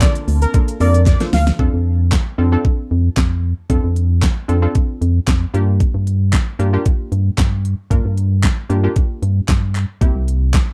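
This euphoric, summery dance-pop excerpt opens straight into a drop in F major at 114 BPM in a straight 4/4, tuned slightly flat to A4 = 435 Hz. A bold, nasal, octave-doubled sawtooth lead with vibrato, chorus, plate reverb and sidechain pumping carries the melody over a very quiet, ethereal FM pad that warbles on a Bbmaj7/D chord. Both drop away during a drum fill that starts at 1.1 seconds and leads at 1.6 seconds into a longer passage built on F6 and Gm7 and closing on C7 at 10.0 seconds. Throughout, a crystalline, detuned wavetable pluck with a noise layer and filter sweep pumps under sidechain and chorus. Beneath it, a hollow, organ-like FM bass sits up front with percussive attacks and its own pumping. The overdriven, layered electronic kit is just as forward, with a knocking kick, fat snare, crisp hats, shaker and claps, while a very quiet group handclap adds a human, live-room touch to a dark production with light reverb.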